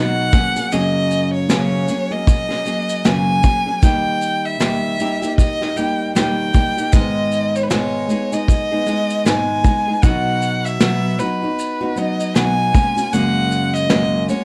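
Acoustic pop with a carefree, easy-going mood and a relaxed swing, heard in a short passage cut from a longer piece. A nylon-string guitar, bright and small in tone, is fingerpicked up front from the start, carrying the accompaniment through a progression that moves from F#add9 through D#, G#m and B before returning to F#add9. A single bowed violin sings the melody with a rich, focused sound and vibrato, sitting close alongside the guitar. At 0.3 s a vintage brush kit joins with a punchy kick, a medium-tuned snare and shaker; it has a lo-fi, muffled character with a rolled-off top, as if captured in a small room. The whole track has a dark, warm production and a moderate studio reverb, giving the intimate trio a modest sense of space.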